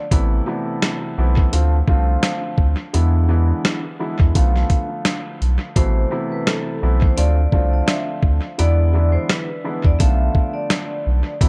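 A swung 85 BPM boom-bap groove in 4/4 sets a dark, tough mood, driven by a gritty, compressed sampler-style drum kit up front, with a thumpy kick, medium-tuned snare, rim clicks and hi-hat, re-recorded in a large room and touched with analog delay, over a deep, round, soft sub bass. A mellow grand piano with long sustain and a cassette-tape tint carries the A harmonic minor chords, cycling Amadd9, Dm7, E7 and Bm7b5 through echoing delay. After a brief touch at the very start, a metallic, ringing vibraphone with slow motor vibrato takes up the melody at 5.8 seconds, all within an echo-heavy digital ambience in this fragment of a longer piece.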